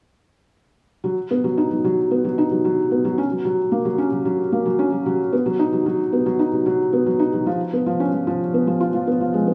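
Hypnotic and intimate, this short electronica fragment cut from a longer piece features a lone felt-muted upright piano, dark and boxy with a thick-felted softness, playing up front in a straight 4/4 at 112 BPM between 1.0 and 9.5 seconds across the range E#3 to E#4, its tone tuned to A4 = 442 Hz and set in a moderate echo-chamber reverb.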